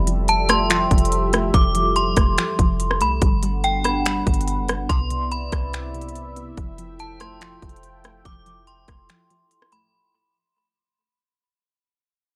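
A ringing, inharmonic FM bell carries the melody up front through chorus, phaser and tape echo in this blissful, floating cloud-rap excerpt at 143 BPM in half-time, over a trap kit with a hard-clipped kick, crisp hi-hat, rim clicks and finger snaps, a deep sine 808 bass that drops out at 9.1 s for a short break, a moody detuned sawtooth pad pumping with sidechain, and a soft filtered pluck arpeggiating in the background, the harmony moving from Fmaj9 through Gmaj7 and Cmaj7 on a dry, gritty recording that fades out across the clip.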